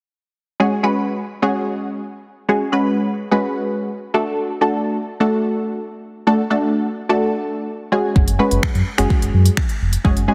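Driving, bittersweet dance-pop at 127 BPM in F# minor: a punchy, detuned sawtooth chord stab with chorus, phaser and sidechain pumping moves from F#sus2 to D and back starting at 0.6 s, then at 8.2 s a deep, sine-toned sub bass with an octave layer, also pumping, arrives with a layered deep house kit of deep kick, smooth hi-hats and finger snaps, all set in a lush hall reverb with a heavily compressed radio sound.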